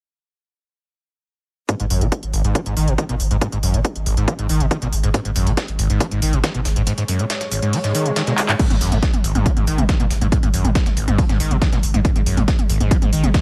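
A screaming, squelchy acid line opens this driving peak-time techno excerpt at 1.7 seconds, arriving together with an overdriven, up-front kick and a layered electronic drum kit of crash, handclaps, smooth hi-hats and toms. The bright, resonant sawtooth riff carries distortion, subtle chorus, tape echo and sidechain pumping, and a filter sweep runs across it through the opening section, while a round sine sub bass sits underneath with its own overdrive and pumping. A very quiet, dark pad fades in behind the groove, its detuned unison layers softened by chorus and built-in reverb, and a gritty, tape-toned sampler kit adds compressed snare and filtered hats. The kick drops out at 6.9 seconds as a background swell sounds and a drum fill leads into the second section at 8.6 seconds, where the full industrial, intense groove returns.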